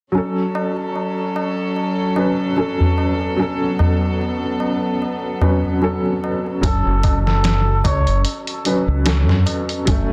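A round, deep dub bass arrives at 6.6 seconds with a muffled, pitched-down sampler drum kit, its thumpy kick set in small room ambience, anchoring this hypnotic, cinematic trip hop fragment in F# minor at 74 BPM with a light 16th-note swing. Before that, a woody, slightly detuned upright piano with tremolo and tape echo rests on F# minor over ringing, high-tuned tabla, while a soft-attack chamber string ensemble floats alongside with 12-bit sampler grit until the bass enters. A raspy, bucket-muted jazz trumpet with vibrato and dub echo slips in for a brief solo line ending at 8.2 seconds, the whole mix carrying light reverb under a dense, heavily limited master.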